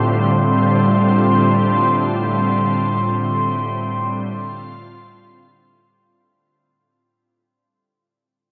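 Drenched in a huge ambient reverb and carried on worn, warbling old tape with a wavering pitch drift, this melancholic, reflective ambient fragment floats in free time, cut from a longer piece. A soft, organ-like additive pad sits up front, holding a single F69/A chord with a pure, bright, detuned tone thickened by ensemble chorus and its own built-in reverb. Above it, a glassy, ethereal glass harmonica adds a smooth, slow-swelling texture on a high C6, and the sound fades out from 1.8 seconds to the end at 6.0 seconds.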